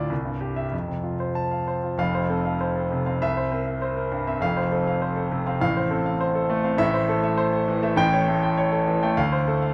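A classical virtuoso piano study in F major at 100 BPM in a rubato 2/4, this heroic, sparkling fragment of a longer piece features a solo concert grand, up front and intimate, with deep bass, long sustain and audible action noise, moving from C and F through C7, Am and A7 to a Dm7 at 9.2 seconds, all bathed in wet large-studio reverb and colored by the warbling pitch drift of worn cassette tape.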